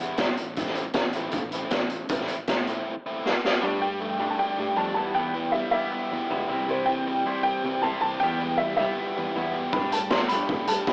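Moody and restless, this indie rock excerpt pairs a biting overdriven guitar riff with fuzzy, fingered electric bass and a raw garage drum kit, whose boomy kick and gritty, saturated sound sit up front before a fill carries it out at 3.5 seconds. From 3.6 seconds a woody, slightly detuned upright piano carries the melody while a clean, twangy electric guitar with subtle chorus sits in the background, and the drums return at 9.7 seconds. Cassette tape coloring, a small room and an AM-radio tone give it a homemade feel.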